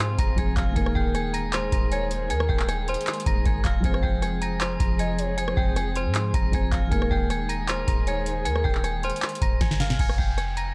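An eerie, menacing half-time trap beat opens on a ringing, inharmonic FM bell melody with a chorused, warbling shimmer. Beneath it sit a mellow concert grand piano, lush bowed strings heard at a distance, and a clean, sine-toned 808 bass, with a booming analog drum machine arriving at 0.2 seconds. The drums sit up front, pairing a deep kick and crisp snare with handclaps, rim clicks and metallic hi-hats, with a short room on the snare, claps and hats. A smooth, gliding portamento lead with chorus and tape echo soon drifts in the background as the harmony moves between two chords, and a drum fill at 9.6 seconds marks the turn. The piano and strings stop at 10.0 seconds, leaving the bell, bass and drums with an electronic downlifter to close this cut from a longer piece, all in a dry, dark production.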